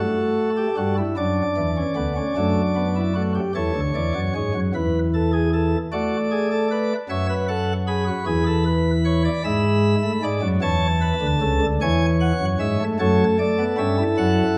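Set in a reverberant recital hall, this joyful, stately fragment of a baroque-style four-part fugue in D major moves at 51 BPM in a straight 12/8, with a solo pipe organ sitting up front on light, sparkling flute stops whose bright voicing spans the low and high registers as the harmony travels from A7 through D, A and E7 before settling on F#m.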